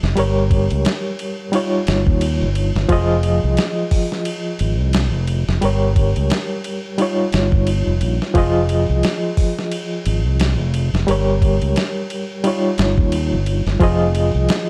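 The recording sounds dark and dry, with a warm production. This brooding, hypnotic trip hop groove moves at 88 BPM in 4/4 with a lazy 16th-note swing, rooted in F minor. A reedy, barky electric piano, overdriven through a combo amp, carries the accompaniment with tremolo and tape echo, cycling through Gdim, Eb7/G and Fm7. Beneath it, a bright, punchy fingered electric bass sits up front with a direct tone. A dusty sampler-style drum kit adds a thumpy kick, a medium-tuned snare, hi-hat and ride, sounding compressed, gritty and tape-warm in a touch of studio reverb. All three parts play together from the start of this cut from a longer piece; the bass stops at about 14.5 seconds, while the piano and drums continue until about 14.7 seconds.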